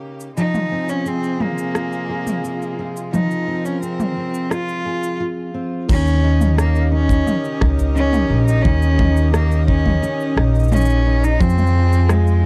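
Folktronica excerpt at 87 BPM in Eb mixolydian, pastoral and playful, where a clear, earthy cello carries the melody over fingerpicked steel-string acoustic guitar arpeggios with tape echo, a distant, rich bowed string quartet holding sustained chords and an organic electronic kit of cabasa, rim click, toms and crash, before a short break at 5.2 s gives way at 5.9 s to a growly, woody pizzicato upright bass and a punchy kick, all in a dry, close 1970s-style studio sound.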